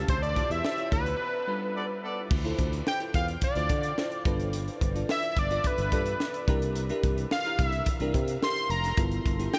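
Soaked in a huge, dreamy reverb, this glossy, breezy slice of polished 1980s jazz-funk pop moves at 108 BPM in a straight 4/4 over Dm11, G9, Dm9, C9 and G13 chords. A fat, detuned sawtooth analog lead carries the melody up front with vibrato and a diffuse ambient delay, over a sparkling, bell-like FM electric piano with subtle chorus, a growly, sustaining fretless bass, and a crisp fusion kit with a high-tuned snare and tight kick in a pumping small room. During a break from 1.2 to 2.3 seconds, a distant horn section adds a faint, roomy second line from 1.8 to 2.2 seconds.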